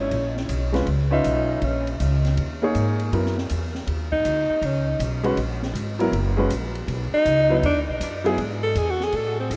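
Searching and intense, this short modal jazz excerpt swings in 4/4 and sits inside a dreamy mix soaked in a huge ambient reverb. A breathy tenor saxophone carries the solo from the first second, mellow and up front, with vibrato, scooped notes and a smooth top, its tone trailed by tape echo. An upright bass played pizzicato gives a woody, thumpy pulse on gut strings, also close to the ear. The open jazz drum kit, entering at 0.1 seconds, stays further back, with dark cymbals, a high-tuned snare and a boomy kick heard alongside the hi-hat and ride. A warm baby grand piano with short sustain comps from 0.7 to 8.4 seconds as the harmony moves through suspended ninth chords before settling on an E chord near the close.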